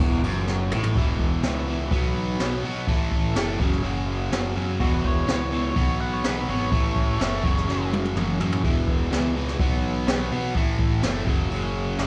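Classic rock in a confident, sunny mood at 125 BPM in straight 4/4, cut from a longer piece and built on an F#5–E5–B5–A5 power-chord cycle. A bright, double-tracked, overdriven stack guitar sits up front playing the picked riff over a picked electric bass, direct and amped, with gritty fuzz. An acoustic drum kit played with brushes adds a boomy kick, a high-tuned snare, dark cymbals and a rolled-off top, plus a couple of short fills. A dusky, distorted octave-fuzz lead guitar adds a second line from 4.8 to 7.9 seconds, and the whole band sounds like it is playing live in one large studio room with moderate reverb.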